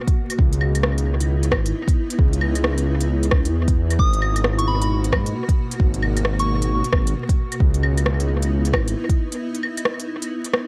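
Future garage at 133 BPM in C# dorian with a 62% sixteenth swing, this melancholic, rainy excerpt sets a blurred granular cloud pad pumping beneath a deep tape-toned kick, an overdriven kit of claves, smooth hi-hat and rim click with dub echo, and a rumbling detuned saw bass over C#m9 and G#m9 chords, while a pure FM bell with chorus, phaser and analog delay sounds from 4.0 to 6.8 s before a break at 9.4 s, all framed by an echo-heavy mix and vinyl crackle.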